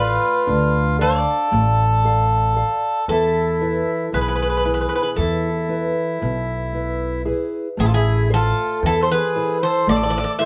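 A metallic, double-strung bouzouki sits up front with the melody in this wistful, dark stretch of Greek folk band music in 9/8, joined by an up-front accordion with a reedy, airy tone on a second line. Beneath them, an old ladder-braced acoustic guitar with old strings and a boxy sound is fingerpicked as accompaniment, while a woody pizzicato upright bass plays until 10.2 s. The chords move from Dm to E, then settle on Am as a new section begins at 7.8 s, with the band playing live in one room under moderate studio reverb.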